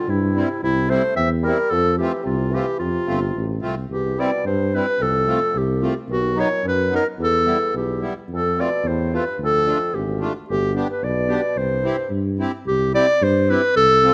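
Alpine folk from an alpine dance band, this jolly, festive piece in a straight two-beat feel has a warm, soft-attacked clarinet carrying the melody up front, with a mellow tuba holding the bass up front as well. A dark, distant bassoon with light vibrato plays a second line until 12.1 s, while a reedy accordion with slow beating fills in the accompaniment from 0.3 s. Close, detailed microphones and light reverb give the sound clarity, and the recording is cut from a longer piece.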